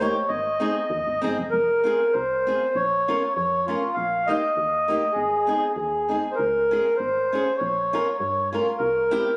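A moderate echo-chamber reverb hangs over this short, compressed clip, which sounds as if it were captured on a phone in the room. It is a jolly, festive piece of alpine dance-band folk in F minor, moving at 99 BPM in 2/4 with a light swing on the eighth notes. A mellow, reedy accordion sits up front with the melody, its vintage, band-limited tone given a touch of delay. Beneath it, a fingerpicked steel-string acoustic guitar supplies warm, concert-style accompaniment, while a woody FM bass adds soft, dark notes with a fast attack that then decay. After an opening phrase, a new section begins at 1.5 seconds and moves from F minor through B-flat minor, A-flat and D-flat before reaching a C7 at 8.8 seconds. The clip is cut from a longer piece, with all three parts playing from the start until just before it ends at 9.4 seconds.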